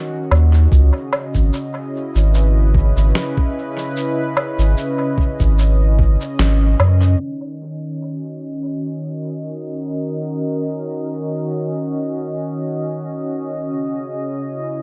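A slow, lightly swung groove at 74 BPM in 4/4 opens this ambient dub piece: sampled woodblock, shaker and snare, muffled and tape-toned with small-room reverb and dub echo, ride over a deep, round sub bass that sits up front, and a thumpy, pitched-down kick with small-room reverb joins at 0.7 seconds. The kick drops out at 6.2 seconds and the bass and percussion at 7.2 seconds, leaving a smooth, detuned sawtooth pad with chorus and tremolo, which holds sustained chords moving from D#m7 to C#m through to 14.8 seconds. The echo-heavy, low-pass-filtered ambience gives the music a deep, spacious mood.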